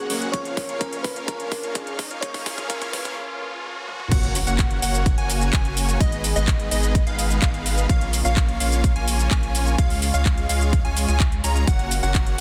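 Euphoric and triumphant, this festival progressive house passage moves with a straight feel, opening with a build-up in which a sparkling, bell-like FM electric piano carries the melody over a dark, intimate baby grand piano that sits in the background with audible action noise. A lush, nasal unison pad holds sustained chords throughout, while a huge, airy supersaw riff drives the arrangement with sidechain pumping and dub echo. The house drum kit, with metallic hats, handclaps, shaker, toms and crash cymbal, rolls through a drum fill as a very quiet electronic riser climbs beneath it, and a punchy, up-front electronic kick anchors the groove. At 4.1 seconds the drop lands with an impact, bringing in a catchy, bright plucky unison lead playing arpeggios with a cassette-tape colour, alongside a deep, saturated sub bass. The chords move from A#m and C# through F#, G#m and back, and the dense, heavily limited master with light reverb keeps the whole drop thick and pumping.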